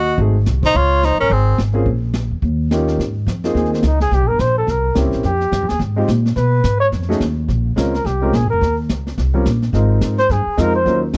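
A dark, lightly vibrato-tinged trumpet stands out in this brisk small-group swing and bop clip in Ab major at 214 BPM, carrying a second line from the start and then taking a solo from 3.0 seconds until it stops at 11.0 seconds. A bright tenor saxophone with scooped notes opens the melody but plays only until 1.6 seconds. Beneath them, a woody pizzicato upright bass on steel strings sits up front, while a natural-sounding grand piano comps through chords such as Ab7b9, Fm9 and Bbm9. A brushed drum kit with a high-tuned snare, boomy kick and rolled-off top keeps a smooth swing feel behind the group. The dry, close recording in a small room has a 1970s studio character, giving the whole passage a swinging, sophisticated mood.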